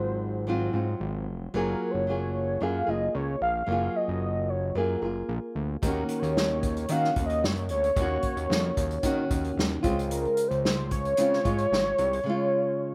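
Dreamy and laid-back, this indie and bedroom pop excerpt at 112 BPM in Db major sets a velvety, chorused synth lead singing between Bb4 and F5 over fingerpicked nylon-string guitar with a warbly pitch drift, a fat, saturated, detuned sawtooth bass with a filter pluck, and an unplugged drum kit of punchy kick, medium-tuned snare and hi-hat played with bundle sticks that enters at 5.8 seconds, all in a dry room as the chords move from Gbmaj9 through Ebm7 to Dbmaj7.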